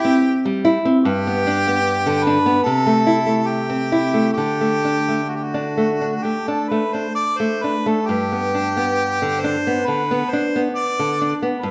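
A harmonica carries the melody in this serene, romantic duo, singing in a classical style with a light vibrato and a roomy, somewhat distant tone set against a slapback echo. Beneath it, a nylon-string guitar supplies fingerpicked accompaniment, its fresh strings giving a small, intimate sound complete with the occasional finger squeak. Both instruments sit up front and play throughout this 11.7-second fragment of a longer piece, moving freely in a rubato 4/4 feel. The harmony drifts from C to G, through Am/C and an open D5 before settling back on G at 8.1 seconds. A moderate recital hall reverb surrounds the pair, lending the performance a warm, gently spacious glow.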